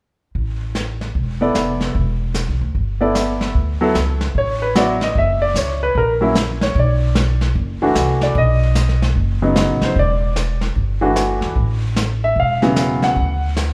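A relaxed swing groove in 4/4 carries this sophisticated jazz piano trio excerpt, where a dark, smooth vintage kit of brushed snare, hi-hat and kick sits under a woody, thumpy pizzicato upright bass on gut strings, while an up-front, clear baby grand enters at 1.4 seconds with the melody over a chord progression that settles on D, all in a moderate recital hall reverb.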